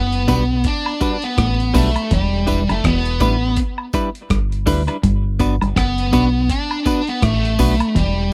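A rough, dry home-demo sound frames this sunny roots reggae excerpt in G major at 82 BPM with a lilting sixteenth-note swing, where a bright, distorted high-gain lead guitar with tape echo carries the melody up front over a picked clean guitar riff, a round, punchy dub bass, a gritty sampler-style kit with a thumpy kick, hi-hat and rim click, a background clean guitar with tape echo, and close tambourine and woodblock, all moving through Gmaj7 and Em7 before returning to Gmaj7 at 5.0 seconds.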